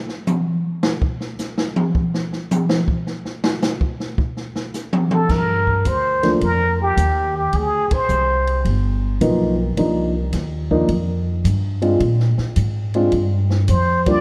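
Lightly reverberant, dark production frames this swinging, late-night small-group jazz excerpt, which opens on a drum solo from a distant, roomy kit with a boomy kick before a breathy plunger-muted trumpet enters at 5.1 seconds to whisper its wah-wah melody, a woody, growly pizzicato upright bass arrives at 5.3 seconds, and a mellow upright piano supplies the chords, the band striking accents at 7.8 and 14.0 seconds.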